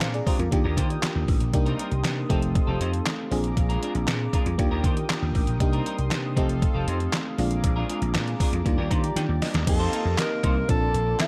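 Bathed in digital ambience, this late-night, danceable slice of early-eighties boogie funk is cut from a longer piece and rides a thumpy, tape-warmed 8-bit drum machine of kick, snare, hi-hat, handclaps and crash, along with a growly, punchy slap bass, both up front. A glassy, bell-like FM electric piano with chorus, a clean semi-hollow guitar riff and a brassy, filter-swept sawtooth pad circle through Bb7, Ebmaj7, Cm7 and F7, with a piano fill from 8.7 seconds and a drum fill just after. At 9.7 seconds the harmony turns to F7sus4 and Bbmaj9 as a mellow, distant alto saxophone enters with a vibrato-tinged solo melody.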